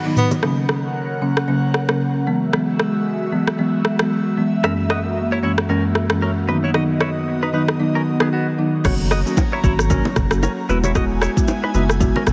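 Heavily compressed with a radio-like sheen and light reverb, this joyful, romantic afrobeats excerpt moves at 114 BPM in F# mixolydian, with a swung sixteenth-note feel and chords cycling through F#, Eadd9, F#7 and B. A woody, dry marimba carries the accompaniment up front over an electronic afro-pop drum kit with a deep kick, crash, rim click, shaker and toms, while a breathy, detuned pad with chorus and phaser holds soft sustained chords and a bright, twangy clean electric guitar with subtle chorus and delay plays a riff from 4.6 seconds. The kick drops out from 7.8 seconds until 8.8 seconds, when a thick, saturated sub bass enters up front and small-room bongos and congas return in the background.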